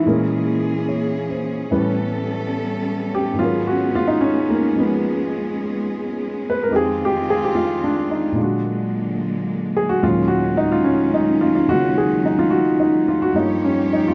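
Swung eighths in an unhurried 4/4 carry this wistful, intimate jazz ballad, cut from a longer piece, where a warm, up-front baby grand piano with short sustain plays accompaniment while a lush, focused cello section holds bowed chords with vibrato through rich extended harmonies from Bbm7b5 through Ebm11 to Gm7b5, all captured in a dry, close 1970s-style studio sound touched with light reverb.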